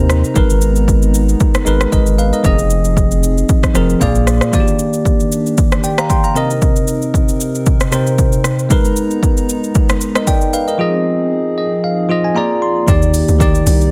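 A digital ambience surrounds this relaxed, soulful amapiano passage in Eb major, cut from a longer piece and moving at 115 BPM in 4/4 with a gentle swing on the 16th notes. A bell-like, bright tine electric piano sits up front with a clean, direct tone, carrying the chords from Abmadd9 through Fm7 and Bb7 to Ebmaj7 and stepping out with fills along the way. Beneath it, a soft, flute-like pad holds dark, full-bodied sustained chords, coloured by chorus, tremolo and sidechain pumping. A punchy, overdriven deep house kit of kick, hi-hat, rim click and shaker drives the groove, while a thick, saturated sine sub bass anchors only the opening until 4.4 seconds. At the drop at 12.9 seconds a hollow, bouncy log drum bass arrives, percussive and decaying, under the closing Ebmaj7.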